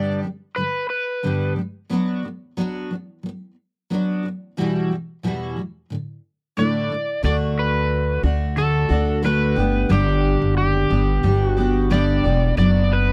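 This acoustic pop fragment has a carefree, easy-going mood and a lightly swung 4/4 feel. A picked steel-string dreadnought acoustic guitar, double-tracked, full-bodied and up front, carries the accompaniment from start to finish. An overdriven electric slide guitar with a warm tone states the melody briefly at the opening, falls away at 1.5 seconds, and returns at 6.6 seconds to carry the line through to the end. A woody, dark pizzicato upright bass joins at 7.2 seconds, grounding the second section as the harmony settles onto D before moving to G and Bm/F#. The sound is dry and close, like a 1970s studio recording, with every instrument placed intimately near the listener.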